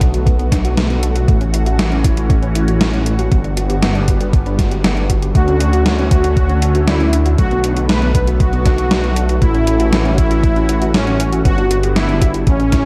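A moody, cinematic synthwave passage in B minor at 118 BPM opens with a thumpy, overdriven electronic kick and a gated 80s digital drum machine playing hi-hat and gated-reverb snare, beneath a thick detuned saw bass up front. Alongside them are a bright, lush unison pad pumping with sidechain, phaser and chorus, and a soft round pluck playing arpeggios in the background through cassette tape and tape echo. At 5.4 seconds a smooth soft supersaw enters up front with the tape-echoed melody over a cycling progression of Bm7, F#m7/A, Gmaj7 and Dmaj7, all set in a dark production with light reverb and digital ambience, cut from a longer piece.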